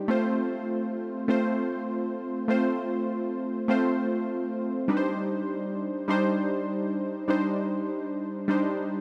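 Hypnotic and mellow, this afrobeats passage in C dorian at 100 BPM, with a 58% swing on the 16ths, features analog keys playing alone from 0.0 to 9.0 s, their round, detuned sawtooth tone sitting up front with chorus and a filter sweep as they move from F to Cmadd9 at 4.9 s, inside a dreamy mix soaked in long church reverb.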